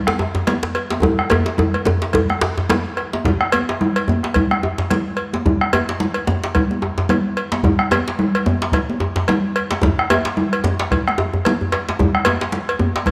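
Two tight, cracking djembes sit up front in this driving, festive West African traditional drum excerpt at 109 BPM in swung 4/4, one dropping out at 2.8 seconds while the other carries on beside ringing, high-tuned congas played with soft hands, a round bombo and a dry, metallic cowbell, the ensemble speeding up inside a wet echo chamber with drum fills at 1.0 and 11.6 seconds.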